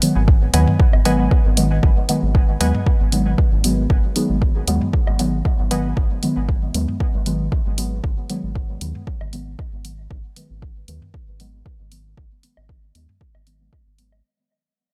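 A deep, soft chord stab sits up front in this hypnotic, cavernous dub techno, its G#m7 colour smeared by chorus, phaser and dub echo, pumping against the kick while a filter sweeps across it and the whole passage fades out. A layered, deep kick anchors a round, dark analog bass that pumps in step, while a dry, overdriven hi-hat ticks over a lightly swung groove and tape-toned electronic toms and woodblock echo in the background. A warbling, lo-fi pluck drifts through the upper register from 0.5 to 5.8 seconds, detuned and dusty, and the whole mix sits in light reverb throughout.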